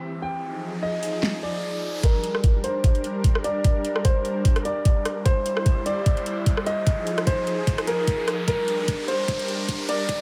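Heavy wobble dubstep at 149 BPM in a swung half-time feel and G phrygian, this menacing excerpt opens with a dark, boxy grand piano melody through a low-pass filter and tape echo, over a lush, detuned supersaw pad with sidechain pumping and an electronic riser. The dubstep kit arrives at 1.0 seconds with metallic hats, a rim click and a huge snare, and a knocking, up-front electronic kick joins at 2.0 seconds as a build-up begins, with a filter sweep moving from the pad to the piano. A drum fill from 8.5 seconds carries the heavy build to the end, all set in a light reverb.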